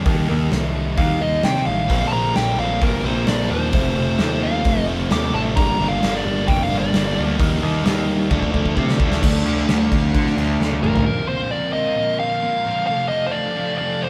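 A moderate stone-room reverb surrounds this brooding, cathartic stretch of quiet-loud alternative rock, cut from a longer piece and played live by a band in one room at 131 BPM in a straight 4/4. A woody, boxy old ladder-braced acoustic guitar picks arpeggios in the background for just the first 1.9 seconds, while a sludgy distorted guitar grinds out a riff behind a bright, fuzzed electric bass that sits up front. A big acoustic rock kit with a punchy kick and medium-tuned snare drives the band across crash, hi-hat and toms, adding fills near the end of the first section and again before the last. At 1.0 second a dark, smooth lead guitar begins soloing over the chords moving from Eb through Bbsus2 and F to Gm, returning later over Bbsus2 and F6, and at 1.9 seconds an overdriven, compressed electric guitar joins up front with its own riff. From 9.2 seconds a dark, nasal string section with a reedy gut-string tone holds sustained chords in the background as the passage shifts into its closing sections.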